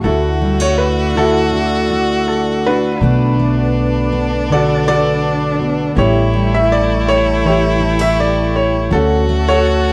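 This acoustic folk-pop ballad moves at an unhurried 81 BPM in 4/4 with a straight feel, set in D major, and carries an intimate, nostalgic mood through a short excerpt of about 10 seconds. A bright upright piano carries the melody up front, its woody tone and audible action noise making it feel immediate. Beneath it, a jumbo steel-string acoustic guitar is fingerpicked with fresh strings and a full-bodied sound, while a warm violin adds a bowed second line with vibrato, soft attacks and expressive portamento. A pizzicato upright bass with steel strings gives a thumpy low end, and a dark analog pad with chorus sits in the background, its detuned sawtooth and sub-octave tones sustaining slow-attack chords. The harmony moves from Dadd9 to Bm7 and A7 before arriving on Dmaj7 at 8.9 seconds, and the recording is dry and close, in a 1970s studio style.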